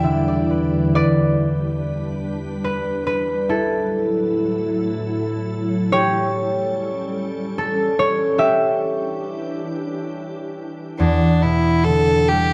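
A rich, nasal fiddle with a reedy gut-string tone carries the melody of this mournful, haunting Celtic slow air, sounding briefly at the very start and then returning close and up front at 11.0 seconds for the closing phrase. Between those moments, a mellow, ringing concert harp, fingerpicked, opens with a short fill and takes a solo from 0.9 seconds. Beneath the harp, a soft, pure organ-like pad with ensemble chorus holds sustained chords until 11.0 seconds. Set in E dorian at 72 BPM in a rubato 3/4 with uneven beats, this cut from a longer piece sits in a wet recital hall reverb with a dark, warm production.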